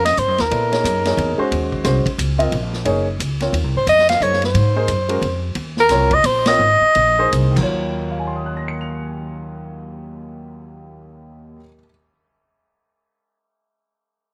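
A breathy soprano saxophone opens this cool, hypnotic modal jazz excerpt in Eb dorian, arriving together with concert grand piano and pizzicato upright bass, while a vintage drum kit joins a fraction of a second later. The band swings in 3/4 at roughly 151-178 BPM over an Ebm9 chord that moves to Ab and back. Played in a soft, whispered subtone, the saxophone leads up front in a high, narrow range, pausing briefly before returning at 3.8 seconds, and both it and the piano carry a slapback echo. The piano's deep bass and audible action noise give the accompaniment an intimate, natural presence, and the woody steel-string bass sits close beneath it. The drums, with dark cymbals, a punchy kick and a rolled-off top, ride low in the mix until the tempo slows, the band hits an accent at 6.4 seconds, and the kit drops out at 7.6 seconds. Piano and bass carry on into a new section in a dry, roomless outdoor sound.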